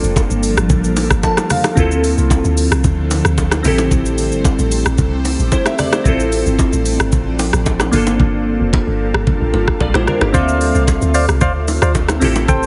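Amapiano at 112 BPM in D minor with a late-night, hypnotic mood, in which a deep, round log drum bass and an electronic R&B kit with a knocking kick, smooth hats, rim clicks and shaker sit up front, while glassy, detuned digital keys with chorus add a short fill at 1.0 s over an ethereal phaser-tinted pad, bright hand-struck bongos and congas ride along, the hi-hats drop out at 8.2 s, and a hollow, mellow organ stab with tape echo enters at 10.3 s, all in a heavily compressed, radio-like mix with light reverb.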